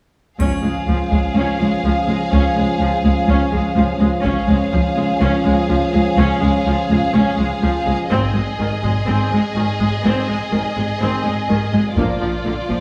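Triumphant and majestic, this cinematic orchestral film-score excerpt is a build-up in straight 4/4, with a lush violin section carrying the melody over a second violin line, smooth, even violas and sustained French horn chords lightly touched with vibrato. Expressive cellos and distant, rich double basses hold the bass in the background, while a taiko ensemble with heavy sticks strikes in brief bursts at 0.4, 4.2, 8.1 and 12.0 seconds, and a bright triangle sounds only at the opening. Recital hall reverb gives the orchestra a wet, spacious finish as the harmony moves from Db to Ab and then Bb.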